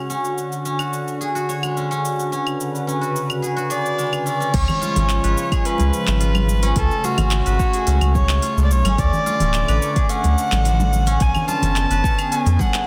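A straight 4/4 groove at 108 BPM drives this meditative, hypnotic organic downtempo in C# phrygian dominant: a sawtooth analog pad with chorus, tremolo and sidechain pumping holds sustained chords while a silvery, ringing steel-string zither plays delayed arpeggios under a filter sweep, an organic electronic kit of claves, crash, handclaps, smooth hi-hat and shaker ticks along, a nasal, earthy bowed kamancheh enters up front with the melody at 3.7 seconds, and at 4.5 seconds a round sine sub bass with sidechain pumping and a deep, tape-warm electronic kick arrive, joined moments later by soft-handed congas tucked in the background, all in light reverb and a dense, heavily limited master.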